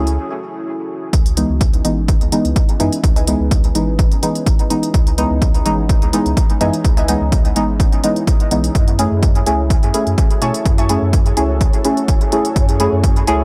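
This hypnotic, cavernous dub techno passage in C# minor opens on a deep, nasal chord stab, treated with chorus, phaser and dub echo, over a clean pure-sine sub bass that pumps against the beat. Smooth, layered electronic hi-hats and a moody, detuned ambient pad with a slow attack, chorus and its own reverb sit further back. A punchy, tape-warm analog kick arrives up front at 1.1 seconds, driving a 126 BPM 4/4 groove with a light swing on the sixteenths. Over it, a warbling, lo-fi pluck with a sub octave and a filter sweep surfaces briefly in the background, first at 2.8 seconds, with its dub echo. At 10.5 seconds a flickering, granular texture drifts in on a single high C#, mellow and reverberant. The harmony moves from F#m7 to C#m7 and back to F#m7, and the overall sound is dry and gritty, with little room reverb.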